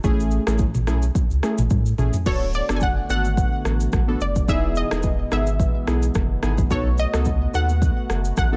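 Afrobeats at 108 BPM in 4/4 with a light sixteenth-note swing, this romantic, breezy excerpt moves through Amaj7, D6, Emaj7 and B7. From the start, round, full-bodied analog keys with chorus carry the harmony over a thick, saturated sub bass and an up-front, electronic afro-pop kit with a deep kick, rim click, shaker, toms and crash, its tape-tinged sound re-recorded in a small room. A drum fill at 1.7 seconds leads into the second passage at 2.3 seconds. There a bright, detuned analog pluck takes the melody through chorus and tape echo, while a smooth, warbling vintage pad holds sustained chords with chorus in the background. A digital ambience surrounds the mix, and the drums stop at 8.5 seconds, just before the close.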